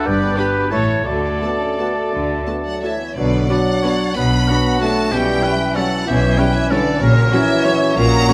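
In a flexible, rubato three-beat lilt, this excerpt of an elegant, festive orchestral piece opens on bowed strings and winds moving through G, A and D chords. A clear, up-front trumpet section adds bright stabs that stop at 2.8 s, while a tight French horn section holds sustained chords underneath. The lush, vibrato-rich violin section carries the melody high above. Around it, a vintage-toned solo oboe, a mellow background clarinet and a soft-attacked bassoon weave second lines and accompaniment, joined by a second, even-toned violin section and a very quiet viola section. An airy flute group with rolled-off highs enters at 2.6 s, and at 3.2 s the harmony turns to B minor, passing through C#m7b5/B and F#7/A#. Distant cellos and smooth double basses anchor the low end, and moderate scoring-stage reverb lends the orchestra a spacious, polished finish.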